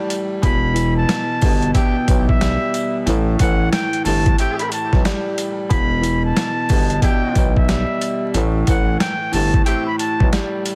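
Gritty, overdriven sampler-style drums with a thumpy kick drive this moody, dark boom-bap hip-hop excerpt at 91 BPM in E minor. They sit up front with a growling, thick FM bass and a clear, intimate grand piano whose action noise is audible through a cassette-tape treatment, while the piano moves through Em, A7, Em7 and A7. From 0.4 seconds a breathy, nasal trumpet with a straight mute carries a jazz-style solo line with delay, a mellow horn section adds background stabs from 1.7 seconds, and jingly sleigh bells sit far back, all under a dense, heavily limited master with vinyl crackle and small-room ambience.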